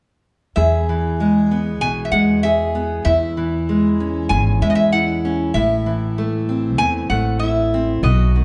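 Pastoral and hopeful, this short cut from a longer acoustic folk piece in a straight 4/4 feel puts a bright, nasal metal-body resonator slide guitar up front on the melody, played with fingerpicks, over a warm fingerpicked steel-string acoustic guitar with audible finger squeak and a woody, thumpy pizzicato upright bass, all bathed in a large studio reverb as the chords move from E to C#m/E at 3.1 seconds and then to Am at 5.5 seconds.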